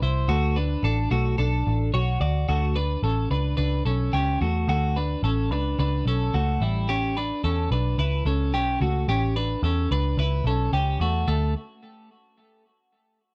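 Youthful and bright, this short excerpt of jangly indie pop moves at 109 BPM in a straight 4/4, with a twelve-string electric guitar ringing out clean, twangy, compressed arpeggios up front while a vintage muted picked electric bass supplies a round, foam-muted, amped low end. Both parts play from 0.0 to 11.5 seconds over a dry, dark production, the harmony shifting from D6 to A7 at 2.5 seconds and settling on D5 at 11.3 seconds.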